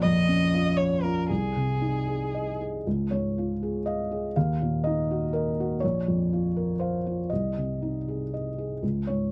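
A dry, close studio sound in a 1970s vein frames this intimate, hopeful neoclassical fragment for piano and strings, cut from a longer piece and flowing in a rubato triple metre. A single muted violin, veiled and dark with gentle vibrato, carries the bowed melody only until 2.6 seconds. The felt-muted upright piano, soft, mellow and thick with felt, sits up front and continues its accompaniment alone through the second section from 2.9 seconds to the close at 9.3 seconds.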